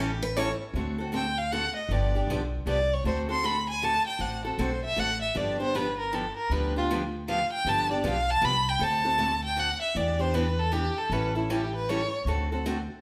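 Lively and playful, this excerpt of acoustic string swing in the jazz manouche style moves in a swung 3/4, with a rich, focused bowed violin taking an up-front solo with vibrato from 1.1 seconds over seventh-chord changes. Beneath it, a bright, boxy picked steel-string guitar carries the accompaniment while a woody, thumpy pizzicato upright bass on gut strings holds the low end, and a second picked guitar with audible finger squeak adds a brief line only in the opening half-second. The band plays live together in one room, bathed in a large, wet studio reverb.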